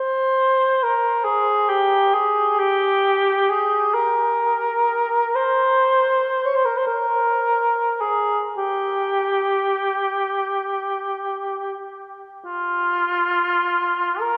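Classical and freely expressive, this lonely, yearning excerpt from a longer piece features an unaccompanied cor anglais, mellow and touched with vibrato, unfolding in a rubato 6/8 at a slow 23-47 BPM across a range from F4 to Db5, placed up front yet sounding distant within a wet cathedral reverb that lingers for 4.7 seconds, with the character of the line shifting at 12.5 seconds before the recording ends at 14.4 seconds.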